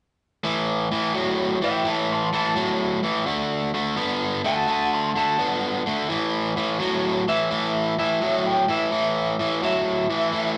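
Rollicking and gritty, this short blues clip swings at 85 BPM in 4/4, with a bright, overdriven semi-hollow guitar up front playing a picked riff from 0.4 seconds over A5 and D5 power chords. At 1.6 seconds a second electric guitar enters, run through a small old amp, its warm, slightly broken-up, compressed melody shimmering with tremolo high above the riff. The rough rehearsal-room recording carries tube saturation and a moderate stone-room reverb that adds a raw, live edge.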